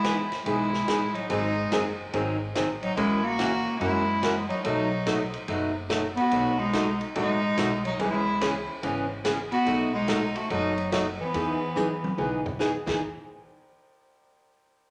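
A breathy bass clarinet carries the melody with jazz-style vibrato from the opening, joined by a clear, distant bowed fiddle on a second line, while a boxy, ladder-braced acoustic guitar with old strings is picked up front over a woody pizzicato upright bass and a vintage drum kit with dark cymbals and a punchy kick. This playful western swing cut in E major moves at 143 BPM with a swung eighth-note feel, its chords passing from Emaj7 through C#m7 and B7 back home, all set in a moderate large studio reverb. A drum fill at 11.8 seconds closes the phrase before the parts stop near 13.0 seconds, at the start of the next section of the longer piece.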